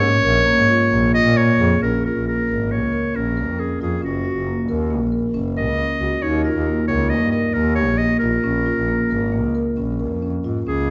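Heard in a wet recital hall, this short cut from a longer contemporary chamber piece in 5/4 at 135 BPM and Bb minor feels hypnotic and restless, with a bright, up-front classical solo clarinet carrying the melody over close-miked, full marimba arpeggios played with medium mallets and an earthy bowed double bass with light vibrato, moving through Bbm, Gb, Ebadd9 and Bbm7.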